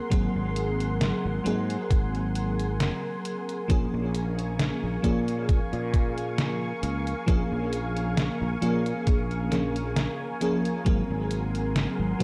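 Vaporwave in Bb minor, this woozy, melancholic fragment cut from a longer piece drifts along at 67 BPM in 4/4 with a light swing on the sixteenths. An FM electric piano layered with a soft pad carries the accompaniment from the start, its dreamy, detuned tone shimmering with tremolo, lush chorus and dub echo. Above it, a silky string machine holds sustained chords with a slow attack and long release, softened by ensemble chorus and a touch of 12-bit sampler grit. From 0.1 seconds a growly fretless electric bass with tube saturation sits up front, joined by a thumpy electronic kick and a detuned 8-bit drum machine supplying hi-hat and a medium-tuned snare, both tape-tinged and re-recorded in a large room. The harmony moves from Ab9 to Bbm7 at 3.7 seconds and back to Ab9 at 10.9 seconds, all within an echo-heavy mix bathed in light reverb and digital ambience.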